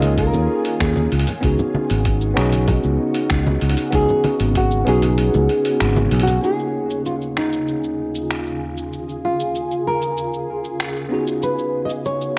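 Wistful and warm, this sunset chillout excerpt sets a thumb-plucked classical nylon-string guitar melody with analog delay over a clean tine electric piano, an ethereal, detuned ambient pad and a growly, up-front fingered electric bass, while a gritty sampler-style kit of filtered finger snaps, hi-hat and shaker and close dry congas add a dusty groove, joined briefly by a thumpy electronic kick in the opening seconds, before the bass and congas fall away at 6.4 s, all in a cassette-tinged home recording bathed in spring reverb.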